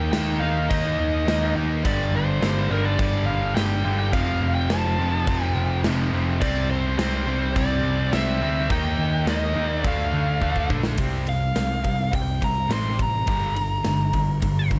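Hard rock at 105 BPM with a menacing, heavy mood, this excerpt sets a dark, distorted, tape-echoed bluesy lead guitar over three picked rhythm guitars (a bright high-gain one, a warm overdriven one, and a tight double-tracked one that stops at 11.0 s), all riffing in the background, while a growly, punchy overdriven bass sits up front and a big acoustic drum kit with bright cymbals and a punchy kick drives through a fill into the lead guitar solo at 11.0 s, all in a small room ambience.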